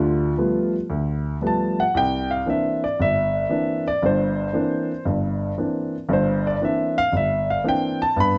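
A warm baby grand piano opens this short solo jazz excerpt, playing alone and up front across its 8.4 seconds in a sophisticated, playful mood. At 116 BPM in 4/4 with a swung eighth-note feel, it moves from a G9 to a C9 chord at 1.9 seconds, ranging from G1 up to B5. The intimate, natural tone carries long sustain and audible action noise, set in a moderate large-studio reverb with a soft, rolled-off top end.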